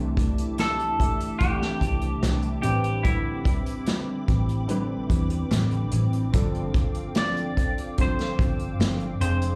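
This laid-back, hazy indie bedroom-pop excerpt at 73 BPM opens on a dark, fingerpicked nylon-string guitar in the background with lush chorus, pitch drift and slapback echo. Alongside it come nostalgic lo-fi synth keys with cassette-tape wobble, a hollow, flute-like pad with ensemble chorus, and a round, foam-muted electric bass, moving through C69, Am11 and G7sus4. An up-front acoustic kit played with bundle sticks and a punchy kick enters at 0.2 seconds, and at 0.6 seconds a bright, twangy clean electric guitar carries the melody while very quiet, crisp group handclaps join, all heard as a live gig through the venue's PA with club reverb.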